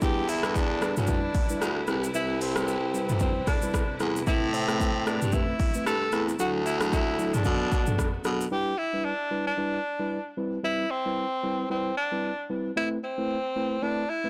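A swung sixteenth-note groove at 113 BPM in 4/4 drives this hypnotic, sultry afrobeats excerpt in E minor, cut from a longer piece. The deep house drum kit sits up front with a deep kick, metallic hats, rim click, shaker and toms, its electronic, layered sound overdriven and re-recorded in a large room. A raspy, gritty baritone saxophone carries the bass line with light vibrato, while a whispered, intimate tenor saxophone sings the jazz-style melody with scooped notes, a soft attack and a digital delay. A mellow tine electric piano plays clean accompaniment through built-in speakers, and a lush bowed string section holds sustained chords in the background over a progression moving from Em7 through Cmaj7, Amadd9, Dadd9 and Bm7. At 8.5 s the drums, baritone saxophone and strings drop out, leaving the tenor saxophone and electric piano to repeat the opening passage until 14.3 s, all under light reverb in a blown-out, overdriven recording.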